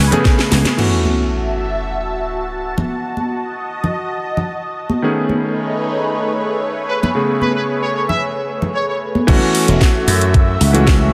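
Cosmic and groovy, this short nu-disco excerpt moves at 113 BPM in a straight 4/4, centred on F# dorian with chords drifting from Amaj9 through F#m7 and B13. A clangy, vintage electric grand piano sits up front with digital delay, while a lush, detuned sawtooth pad with slow attack holds sustained chords through chorus, phaser and sidechain pumping, and acoustic congas patter beneath from 0.1 to 9.3 seconds. The opening drum fill brings a cracking snare, metallic hats and a crash from the layered house kit, plus a thumpy electronic kick and a punchy, bright slap bass, before a band accent at 0.7 seconds and an electronic sub drop at 0.8 seconds. A tight, brilliant trumpet section with vibrato adds a short melodic phrase around 6.9 seconds, trailed by dub echo. At 9.3 seconds the drop arrives, with the kit returning alongside kick and slap bass up front over the F#m7 chord, all wrapped in a moderate hall reverb.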